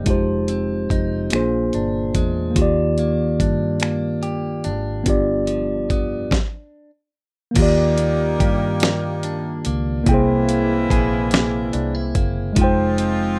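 A rough home-demo mix in a moderate studio room carries this slow, late-night, yearning R&B excerpt in 6/8 at 48 BPM, with a mellow, up-front tine electric piano and a compressed, clean picked electric guitar playing a second line over chords like Fm7, Bb7 and Ebmaj7. Underneath, a dark, foam-muted fingered bass with a round, amped tone sits beside a gritty, sampler-style soul kit with a thumpy kick, medium-tuned snare, hi-hat, finger snaps and crash. After a stop from 6.3 to 7.6 seconds, a clear, punchy horn section with light vibrato and octave doubling enters at 7.6 seconds with stabs that carry a slapback echo.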